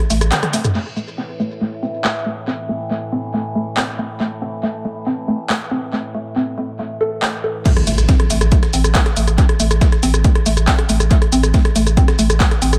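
This intense, industrial peak-time techno excerpt in A minor at 139 BPM opens on a punchy analog drum machine of hi-hat, handclaps, rim click, shaker, toms and crash, its filtered, pumping hits re-recorded in a large room. A dark, woody, wave-folded pluck riff with lush chorus and tape echo runs throughout, a drum fill and band accent mark the opening, and from 1.0 seconds a resonant sawtooth drone with moving overtones and built-in reverb hovers beneath a filter sweep. At 7.7 seconds the drop lands with an up-front layered kick, a very quiet gritty sampler-style hi-hat and snare, and a faint electronic impact, joined at 7.9 seconds by a thick saturated sub bass, inside an echo-heavy mix.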